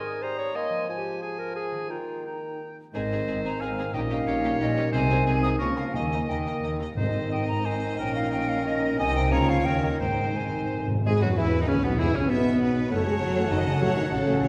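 Rich, lush violins carry the melody of this spirited, graceful romantic orchestral movement in a fast, rubato 3/4 at 168-200 BPM, entering at 2.9 s over an opening of bright oboe, clear clarinet, hollow flute, warm bassoon and ringing thumb-plucked harp arpeggios, and joined by a soft-edged second violin line, violas, dark French horns in the background, woody cellos and smooth double basses, with round soft-mallet timpani and a timpani fill at 10.0 s, before the music moves from Ab major to E major at 11.1 s, where distant trombones and a roomy tuba join, set in a wet concert hall reverb.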